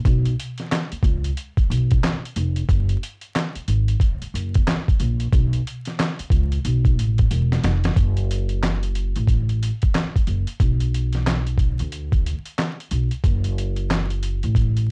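A gritty, compressed, sampler-style drum kit sits up front in this moody, tough boom-bap hip-hop excerpt, its pitched-down thumpy kick, medium-tuned snare, hi-hat and handclaps carrying a warm tape character at 91 BPM with a 16th-note swing. A woody, bright pizzicato upright bass with steel strings plays low beside the kit in F# harmonic minor. The dry, dark production carries vinyl crackle, and a drum fill at 7.3 seconds leads into a new section at 8.0 seconds.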